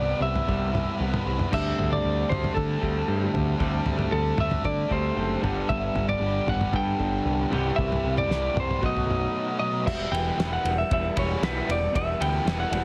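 Heavily squeezed into a compressed, radio-like sound with a touch of reverb, this restless, cool indie rock fragment is cut from a longer piece and moves in a straight four. A slightly broken-up lead guitar carries the melody in a higher register, its plate reverb setting it apart from the rest of the band. Beneath it, a bright, twangy electric guitar through a small old amp and a compressed fuzz guitar, carrying distortion, subtle chorus and slapback echo, both play riffs. A growling, round, overdriven bass anchors the low end. The cloth-damped drum kit enters at 0.4 seconds, thuddy and dry, with dark cymbals, a fat snare and a tight kick. The harmony drifts from Cmaj7 through D7sus4 and Gadd9, back to Cmaj7 and on to B7 before settling on Em at 9.9 seconds.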